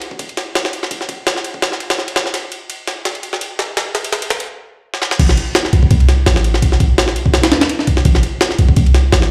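A swung 168 BPM jungle break of crash, kick, ride and snare drives this raw, dark drum and bass piece in A minor, its sampler-style kit gritty, pitched up and compressed, with a thumpy kick and high-tuned snare up front, building through a drum fill from 2.3 seconds until a deep, boomy 808-style sine bass with a noise layer and fast attack drops in at 5.2 seconds, the mix ringing in a large, bare-room reverb.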